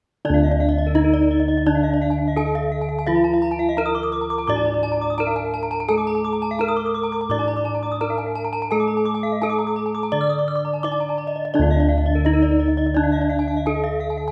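Gamelan in D pelog at 85 BPM, a shimmering, brilliant excerpt cut from a longer piece, with all parts sounding together from the opening moments to 14.3 seconds. A wooden-mallet bronze metallophone carries the melody, a second, horn-mallet metallophone plays accompaniment beneath it, and two horn-mallet metallophones with paired tuning spin out arpeggios whose bright, beating shimmer is kept up front on one and turns airy on the other. Bossed gongs hold the bass with a round, beating tone, all set in a moderate recital hall reverb.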